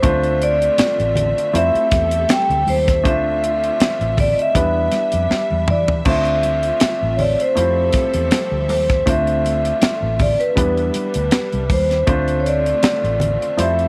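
A lightly swung 16th-note groove at 80 BPM in 4/4 carries this silky, bittersweet slice of lush 1970s-style soul in D dorian, where a ringing, metallic vibraphone played motor-off with medium mallets leads the melody over a baby grand piano with short sustain, a close, focused string section holding bowed chords with vibrato, a dark, round, foam-muted fingered bass, a dry, up-front funk kit with a high-tuned snare and tight kick that adds a drum fill at 5.3 seconds, and very quiet, warm thick-skinned congas, moving through Dm7, Fmaj7 and Em7 under light studio reverb.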